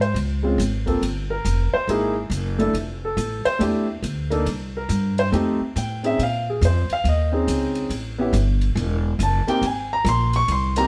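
A moody, late-night jazz piano trio opens all at once, with grand piano, upright bass and a compact cocktail drum kit swinging together at a brisk 4/4 lilt. The grand piano sits up front with a warm tone and deep bass, taking a solo across the whole passage, its lines ranging from Ab3 to Db6 over rich harmony that moves from a rootless Bbm9 through Gm7, Gbm13 and Fmaj13 before reaching Bbm11, A7(no3) and Abadd9. The plucked upright bass is also up front, woody and thumpy with the round sound of gut strings, anchoring the low end down to E1. Further back, the drums play hi-hat, ride cymbal and kick, sounding dry with dark cymbals and a punchy kick. The trio plays live in a moderate stone room whose reverb lends the group a shared space, and the drums stop at 10.8 seconds, just before the piano and bass end at 10.9 seconds, in a passage cut from a longer piece.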